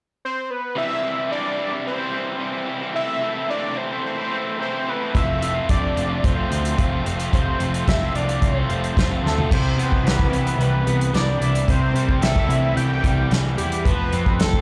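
Wistful and carefree, this indie rock fragment moves at 110 BPM in C major, opening with a fat, detuned analog lead carrying the melody with chorus, vibrato and a sweeping filter, soon joined by a bright, crunchy overdriven guitar riff up front. At 5.1 seconds a growling, overdriven picked bass and a loose acoustic drum kit with a tight kick and rolled-off top come in, and after a drum fill a second overdriven electric guitar slips into the background at 9.5 seconds with analog chorus and delay. The whole band sounds like a live club gig heard through the venue's PA, wrapped in small-room ambience and club reverb.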